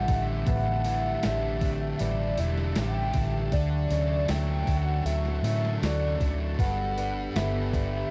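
Shoegaze and dream-pop rock in D major at 79 BPM, this short, wistful and blissful fragment is cut from a longer piece. A soft, round sine lead carries the melody with vibrato, wrapped in chorus, phaser and analog delay, while a shimmering pulse-width pad holds slow-attack chords with a long release underneath. A thick, fuzzed-out electric guitar plays a distorted riff through analog chorus, and a boxy, octave-doubled twelve-string acoustic guitar picks arpeggios in the background with subtle chorus and delay. Up front, a foam-muted, punchy fingered electric bass with transformer saturation anchors the low end, joined by a crisp, tape-warm 8-bit drum machine with a thumpy kick, medium-tuned snare and hi-hat. The harmony moves from A7sus4 to Dmaj7 at 3.5 seconds and G at 6.6 seconds, and the dry sound comes from a cassette home recording.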